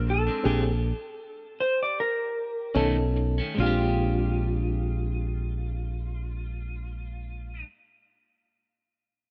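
Blues with a laid-back, rollicking feel, cut from a longer piece, as a dark, slide-voiced clean lap steel carries the melody up front over a round, punchy fingered bass, phaser-tinged picked electric guitar stabs and a reedy electric piano shimmering with fast tremolo, all in light reverb, with the pulse slowing down over the first 3.6 seconds and a stop from 0.4 to 2.8 seconds.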